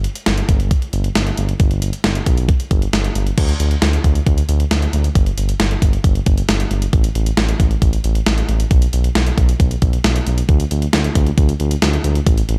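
The recording sounds dry and close, with little reverb around the mix. This short cut from a longer synth-pop piece moves at 135 BPM in a straight 4/4, tuned slightly low to A4 = 438 Hz. Its mood is nocturnal and cool. A clean 12-bit digital drum machine plays throughout, sampler-style and up front, with a thumpy kick, a medium-tuned snare, hi-hat and crash cymbal; its overdrive adds grit, while gated reverb and a large-room re-recording give the hits a clipped sense of space. Beneath it, a smooth synth bass blending sawtooth and triangle tones sits between G1 and D2, its fast attack and sustained, mellow notes keeping the low end round and present. The arrangement moves into new sections at 3.4 and 10.5 seconds, and both parts play from start to finish across the 12.6 seconds.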